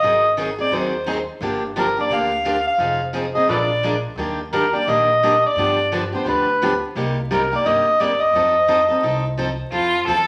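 A gritty, overdriven harmonica leads this charming, swinging acoustic string swing excerpt, its amplified solo full of vibrato, scooped notes and tongue slaps, while a bright, freshly strung picked steel-string guitar comps up front and a woody, thumpy pizzicato upright bass on gut strings holds down the dark low end. The harmonies move from Ab7 through Gm7, Fm7 and Bb7 to Ebmaj7, then G7, Cm7 and F7, all set in a wet large-studio reverb with a layer of vinyl crackle. At 9.7 s, as the chords land on Fmaj7, the harmonica has just finished and a clear, focused bowed violin steps forward briefly with a short second line.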